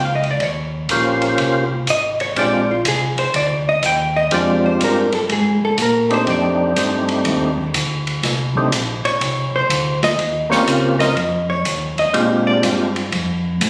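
Bluesy and greasy, this soul jazz organ trio excerpt moves with a swinging 4/4 feel over dominant chords built around Eb13, Bb13 and F13. A vintage hollow-body electric guitar sits up front from the start, dark, clean and picked with a compressed tone, carrying a solo across the whole passage. Beneath it, a mellow tonewheel organ handles the bass line with a round, dark, clean sound colored by chorus vibrato and a slow rotary speaker. An open acoustic drum kit joins at 0.2 seconds on hi-hat, ride, snare and a boomy kick, with dark cymbals and an airy, polished character. At 0.9 seconds a second tonewheel organ brings in the melody, full and lightly overdriven with a percussive second-harmonic attack, chorus vibrato and slow rotary swirl. The whole trio sounds as if captured by a phone in the room, bathed in a moderate large-studio reverb.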